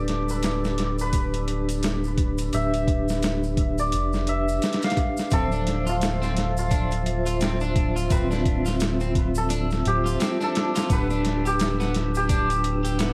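Brooding and cinematic, this trip hop excerpt at 86 BPM in D dorian swings over a gritty, pitched-down boom bap drum kit with a thumpy kick and a round, deep analog bass, while a shimmering hammered santur carries the melody through dub echo above a ringing vibraphone with tremolo, a distant tube shaker and a faint, breathy wind-like noise layer sit in the background, a slightly broken-up electric guitar enters at 5.3 s with picked arpeggios through subtle chorus and tape echo, and vinyl crackle runs beneath it all.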